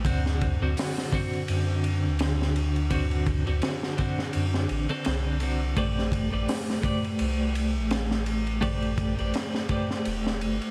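A bright, twangy twelve-string electric guitar sits up front in this melancholic, brooding trip hop excerpt, its clean, compressed picking shaded by tremolo and tape echo. Underneath, a soft dub sub bass gives a deep, round foundation with a sustained, square-edged tone. A crunchy breakbeat kit of kick, snare, hi-hat and ride carries a gently swung 4/4 groove, the drums gritty and saturated with a punchy kick, a high-tuned snare, dark cymbals and a rolled-off top. The harmony rests on D7 before moving to Am11 at 5.8 seconds, and the three parts play together throughout the roughly 10.7-second clip. Light small-room reverb and a layer of vinyl crackle lend the mix a dusty, intimate atmosphere.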